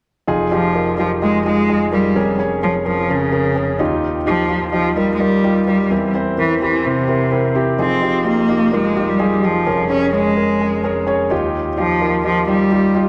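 Driving and earnest, this piano-driven pop passage in F minor at 128 BPM, cut from a longer piece, sets an up-front concert grand with intimate action noise, deep bass and long sustain from 0.3 s beneath a focused solo cello melody, bowed with vibrato from 0.5 s, as the chords move through Fm7, Bbm7/F, Ebadd9 and C7/E in a dark, warm production bathed in a scoring-stage reverb of 1.9 seconds.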